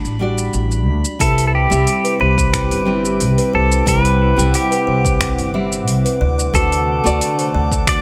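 Lightly reverberant and sunny, this blissful sunset chillout cut opens with a fingerpicked, full-bodied nylon-string guitar through tape echo, a growly, woody pizzicato upright bass up front, an overdriven deep house kit of finger snaps, metallic hi-hat and shaker, and a glassy, drifting glass-harmonics texture in the background, before a twangy, bright pedal steel guitar carries the melody with slide and volume swells from 1.2 seconds, joined by an airy, breathy pad, a buzzing, hollow kalimba tracing arpeggios and a deep, overdriven electronic kick.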